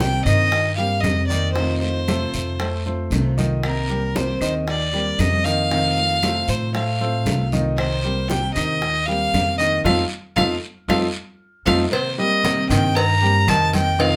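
A sunny Cuban son and guajira excerpt at 116 BPM opens with an up-front bowed violin, biting yet earthy with light vibrato, carrying the melody over a picked steel-string acoustic guitar with finger squeak, worn baby grand piano arpeggios with long sustain, a growly pizzicato upright bass, background congas, round low-tuned bongos and cowbell, and a raspy, saturated guiro, joined by woody claves from 0.3 s, as the harmony alternates between Cm7 and F7 until a band accent at 9.9 s and a drum fill lead into a new section at 11.9 s.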